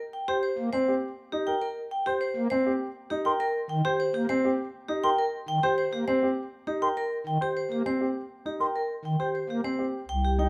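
In a straight 3/4 at 101 BPM, this bright, hypnotic minimalist classical excerpt in Eb major sets a metallic, ringing vibraphone melody with slow motor vibrato over open, long-sustaining baby grand piano arpeggios and a soft, shimmering celeste accompaniment of organ string stops, while a pure, hollow flute adds high arpeggios from 3.3 to 8.7 seconds and a smooth-topped bass clarinet enters up front at 10.1 seconds, all in light reverb with close, detailed miking.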